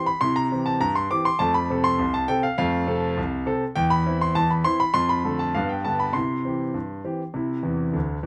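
In a straight 2/4 at 101 BPM, this cheerful, playful ragtime piano fragment in C major moves from C to F, then through C/E, Dm/F and G back to C. A clear, natural grand piano plays solo, sitting up front and ranging from C2 to D6, with a short fill at 7.6 seconds before the 8.3-second clip is cut from the longer piece. Close, detailed microphones and light reverb shape the sound.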